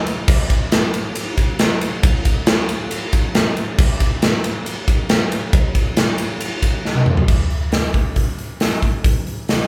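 Rock with a dark, cathartic mood at 137 BPM in a straight 4/4, this short cut from a longer piece features a big acoustic rock drum kit up front from 0.1 seconds, with a punchy kick, medium-tuned snare, toms, hi-hat and bright crash and ride cymbals ringing in a big room under light reverb, played live in one room, and a fill at 6.9 seconds launches a new passage at 7.3 seconds.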